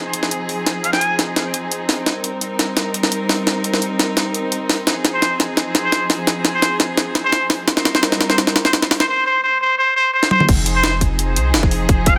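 Liquid drum and bass at 171 BPM in F minor, this rolling, soulful passage is cut from a longer piece and moves between Fm7 and Cm7. A muted chamber string section holds veiled, con sordino chords with light vibrato, while a round, deep sine sub bass sits beneath with a fast attack and mellow sustain. Up front, a gritty, pitched-up jungle drum kit with a compressed, medium-tuned snare, hi-hat, toms and crash cymbal drives a long build-up full of fills. A nasal, bright trumpet with a straight mute plays a brief phrase near the start, then returns at 5.1 seconds with jazz-style scooped notes, vibrato and digital delay. At 10.5 seconds the drop arrives and a tight, layered electronic kick joins the mix. The whole is set in a moderate plate reverb that lends a digital sense of space.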